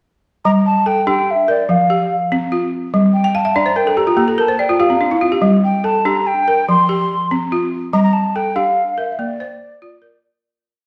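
A mellow, airy flute with vibrato and a hollow tone opens at 0.4 s with a song-like motif melody over a woody, buzzing balafon playing an interlocking ostinato with fast runs and a fill at 3.2 s, in a hypnotic, reflective piece of West African string and xylophone music in G dorian at 96 BPM in a straight 12/8, with both instruments up front in a reverberant recital hall until the fade-out from 7.9 s.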